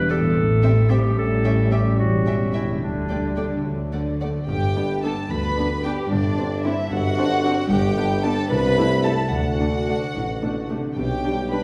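Magical and playful, this whimsical cinematic cue in G major moves at 74 BPM in a straight 6/8, with a rich chamber violin section carrying the soft-edged sul tasto melody over a second violin line, dark violas, a warm cello section and a floating, distant double bass section, while a ringing fingerpicked harp spins arpeggios in the background, a bright, vintage clarinet adds a second line until 3.6 seconds, mellow French horns hold chords until 4.2 seconds, and a clear tuba joins the bass from 4.5 seconds, all set back in a wet scoring-stage reverb.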